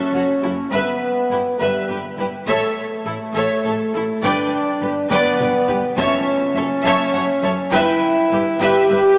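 Dramatic and relentless, this cinematic orchestral film-score passage, cut from a longer piece, moves at 68 BPM in a straight 6/8 through minor-leaning harmony that shifts from F#m7 to Em, A and G before circling back. A roomy, distant French horn section sits up front with sustained chords, while a close, focused viola section fills the accompaniment with lush vibrato. Two bowed violin sections carry the upper lines: the melody, sung with light vibrato, stays in the background, and a smooth, even second line sounds more distant. Underneath, a soft-attack, expressive cello section and a rich, smooth double bass section anchor the low end from 0.1 seconds. A very quiet taiko ensemble struck with heavy sticks enters at 2.5 seconds, dry and close, with a drum fill leading into a brief, very quiet timpani hit at 6.0 seconds. The whole sits in a wet concert-hall reverb, though the overall sound has a small-speaker quality.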